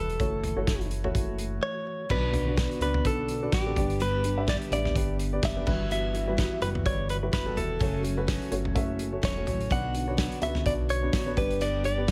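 Piano-driven pop in B minor at 126 BPM with a light sixteenth-note swing, bittersweet and dramatic, where a clean, compressed electric guitar carries the melody up front over a dark, woody upright piano with audible action noise, a very quiet flute-like tonewheel organ with key click and fast rotary shimmer, a glossy, retro chorused synth bass, and a loose, punchy indie drum kit with dark cymbals, while a bright picked steel-string acoustic guitar with finger squeak joins in the background at 2.1 seconds after a brief break, all in a small, lightly reverberant room.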